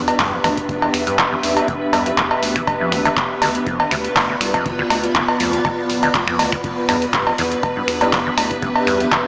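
A lush string machine, a round, mellow analog bass and a blurred granular cloud pad open this hypnotic, gritty acid house excerpt at 121 BPM in E phrygian, all three pumping to the sidechain. An up-front electro drum machine with metallic hats, cowbell, snaps and handclaps joins a deep, dry electronic kick and a squelchy, resonant liquid acid bass riff run through phaser, tube saturation, chorus and tape echo, over chords moving from Em7 to Dm and back. A dark, boxy grand piano stab flickers very quietly at 8.0 seconds, and the dreamy mix is soaked in cathedral reverb with a small-speaker sound.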